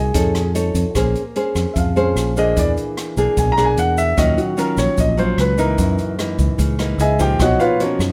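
A brief, airy alto flute note with a soft attack and gentle vibrato hovers in the background as a concert grand piano, fingerpicked nylon-string guitar and round, dark fingered electric bass open this wistful, intimate bossa nova fragment. An acoustic jazz kit with a boomy kick, hi-hat and rim click joins, along with a grainy, bright tube shaker tucked far behind. From 1.0 seconds the piano takes a solo over rich jazz chords, its long sustain, deep bass and audible action noise up front beside the classical-toned guitar and bass, all in light reverb that suits a natural studio room.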